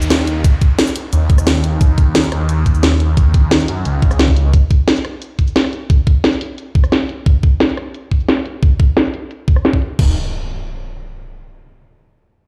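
A straight 4/4 groove at 176 BPM drives this dark, technical drum and bass passage in Eb minor, with a futuristic, aggressive mood. The drum kit plays from the start until just past 10 seconds, its cracking snare, hi-hat, rim click, shaker and crash cymbal muffled by low-pass filtering, with a filter sweep running over the drums for the first 10 seconds. A layered electronic kick with a knocking punch joins at 0.4 seconds and sits loudest in the mix. A thick, swirling detuned saw bass, saturated with overdrive, colored by a phaser and pumping with sidechain, holds between Db2 and Gb2 before stopping at 4.5 seconds, returning only briefly at the very end. Quieter electronic downlifter and impact effects open and close the passage, and the sound sits in a bare room on a big system, with light reverb and a large studio tail around the up-front drums and bass.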